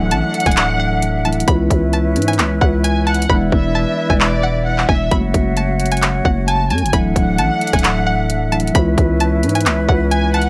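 A growling, buzzy 808-style bass sits up front with an electronic trap kit of hard-clipped kick, hats and handclaps in this menacing, eerie half-time hip hop cut at 132 BPM, where a twangy, bright resonator pluck with chorus carries the melody over a dark, woody violin section with tape echo, a mellow tine electric piano, airy flutes holding chords and a faint downlifter in the opening 1.5 seconds, the hats dropping out from 3.3 to 5.1 seconds, all captured in a dry, gritty hardware sound with transformer saturation.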